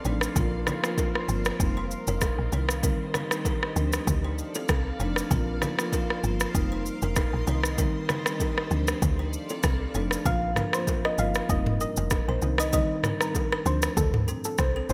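Afrobeats with a sultry, mellow mood and a gentle swing, heard as an excerpt cut from a longer piece. An electronic afro-pop drum kit sits up front with a deep kick and tape warmth, rim clicks, shaker and toms wrapped in gated reverb. Beside it, a woody log drum bass gives punchy, fast-decaying low notes. A soft-mallet marimba with rosewood roundness carries the accompaniment, while a ringing, airy kalimba riff with delay floats in the background, and very quiet acoustic bongos and congas add small-room color. A cloudy, evolving granular pad holds blurred, full-bodied chords until 10.2 seconds; at 10.3 seconds a dark, gentle pluck with chorus and delay takes over with a melody over the repeating Bbsus2, F7sus4, Cm and Dm7 cycle, all within a bright 1980s-style digital production.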